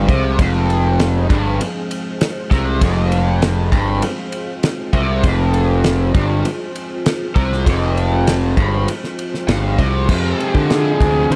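A straight 4/4 pulse at 99 BPM drives this hypnotic, trippy stretch of psychedelic rock in F minor, cut from a longer piece. A damped 70s acoustic drum kit enters at 0.1 seconds with a fat snare, tight kick, crash and ride, sitting dry and up front with an analog delay trailing it. A fuzz-soaked picked electric bass growls low and punchy beneath a cranked, double-tracked stack guitar whose bright overdriven riff is colored by a flanger. Far behind them, a lush vintage string machine holds slow-attack sustained chords with a sub octave and ensemble chorus, resting on Fm before moving to Fmadd9 at 10.1 seconds. At 10.7 seconds a screaming, guitar-like overdriven synth lead bursts in with a sawtooth and square wave tone, a filter sweep, vibrato and echoing delay. The mix is echo-heavy, set in a small room with light reverb.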